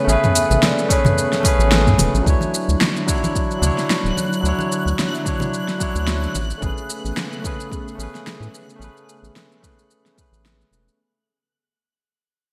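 A bright, 1980s-style digital sheen and a lush hall reverb frame this relaxed sunset chillout excerpt in D lydian, moving at 110 BPM with a 16th-note swing. A vibraphone played with soft mallets opens with a brief, ringing melody that stops at 1.7 seconds, its fast motor vibrato carried on a digital delay. Up front, a barky, bell-like tine electric piano supplies accompaniment through a combo amp, while a silky string machine sits in the background, its sustained chords colored by phaser and ensemble chorus. A round, deep analog bass with a filter pluck anchors the low end beside a tape-warm deep house kit with fat snare, metallic hats, shaker and toms under gated reverb, joined by an electronic kick and background congas. At 2.3 seconds the harmony moves from Amaj9 to Dmaj9 and the music begins to fade out. From 2.8 seconds a twinkling granular texture adds an octave-up shimmer high above, and at 6.3 seconds the harmony returns to Amaj9.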